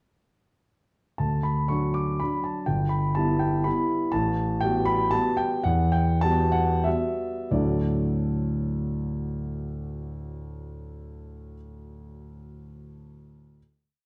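Classical piano waltz in 3/4 with a graceful, elegant rubato feel, played by a solo concert grand with deep bass and an up-front single-line melody over a waltz bass, moving through D, Em/G and Asus2 while slowing from 3.4 to 7.5 seconds before settling on a final D chord at 7.5 seconds, all set in a dark production with a wet recital hall reverb.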